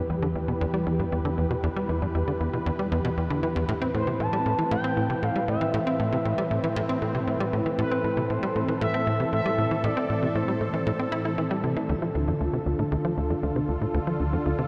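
A dreamy, reverb-soaked mix fills a cathedral-sized space in this cosmic, expansive slice of sequencer-driven space music, cut from a longer piece and moving at 117 BPM in 4/4 in A minor. Up front, a sweeping resonant pad of detuned sawtooths with a noise layer and slow filter swell holds sustained chords through chorus and shimmer reverb, beside a tight, punchy sequencer bass whose ring-modulated, filter-plucked riff drives the pulse through tape echo. At 3.9 seconds an expressive synth lead enters, its smooth, resonant sawtooth tone carrying a vibrato-laden melody with a soft attack and filter sweep before it stops at 11.6 seconds. The harmony moves from E minor to A add9, then shifts to D minor at 11.9 seconds, where a round, nasal analog bass of triangle and sine tones slips in, barely audible beneath the rest.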